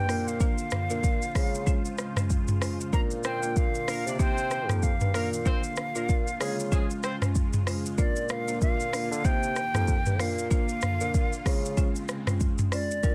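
A hollow, airy concert flute carries the melody in this breezy, romantic afrobeats excerpt, its vibrato and crisp attack set close and bathed in delay and plate reverb. Underneath, an electronic afro-pop drum kit sits up front at 95 BPM in 4/4 with a swung sixteenth feel, pairing a deep kick and smooth hats with rim click, shaker and toms. Hard-mallet marimba adds woody, percussive accompaniment from a boxy small room, while a mellow bassoon, close-miked and in classical style, holds the bass line with light vibrato. A lush, thick unison pad of detuned sawtooth and square waves with a sub octave stays in the background, its bright sustained chords colored by chorus and phaser as the harmony moves between Bbadd9, Dbmaj7 and Cm7 in Bb major. A punchy, vintage horn section joins with a second line from 3.2 to 7.1 seconds, and the whole is given a dense, heavily limited modern master with light reverb.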